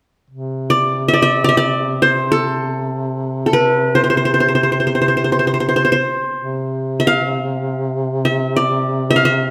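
Arabic music in free time, stately and warm, cut from a longer piece. A mellow duduk holds a low drone from 0.3 seconds, its tone punchy and present, with vibrato and scooped notes in a folk style. At 0.7 seconds the qanun enters with the melody, played with fingerpicks on its triple strings, giving a bright-edged acoustic sound that sits up front and louder than the drone. Both parts carry through to 9.5 seconds, the duduk's mellow hum under the qanun's glinting line. A wet recital hall reverb lends the whole a spacious, warm glow.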